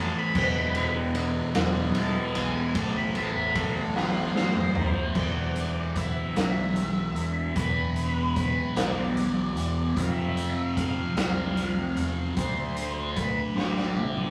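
Dark and mysterious, this excerpt of psychedelic rock moves at a slow 50 BPM in a straight 6/8, built on an E phrygian dominant colour. A thick, double-tracked fuzz guitar sits up front with a phaser-treated riff, joined by a growling overdriven bass and a raw garage drum kit that is punchy, gritty and saturated, entering at 0.3 s. Over them, an octave-fuzz lead guitar takes a solo through the opening 5.2 s and carries the melody throughout, while a reedy, nasal harmonium breathes sustained chords in the background until 5.1 s. A very quiet tanpura drone buzzes and shimmers beneath until 11.7 s. The harmony shifts from E and Am to power chords on E, F and D, with drum fills closing each section, all captured in a rough rehearsal-room sound with stone room reverb.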